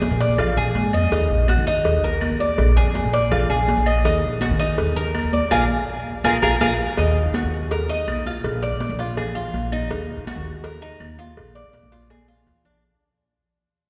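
A picked Cuban tres with metallic, octave-doubled strings plays arpeggios up front over a pizzicato steel-string upright bass in this danceable Cuban son and guajira, cut from a longer piece and set in Eb minor at 164 BPM in straight 4/4. Bright, high-tuned congas and distant, woody claves sit in the background, while a tight, dry cowbell played with hard hands sounds alongside them, and the whole recording is steeped in a wet church reverb. A band accent from 5.5 s and a drum fill at 6.4 s lead into the second section at 7.0 s, where the music begins fading out until it ends at 12.8 s.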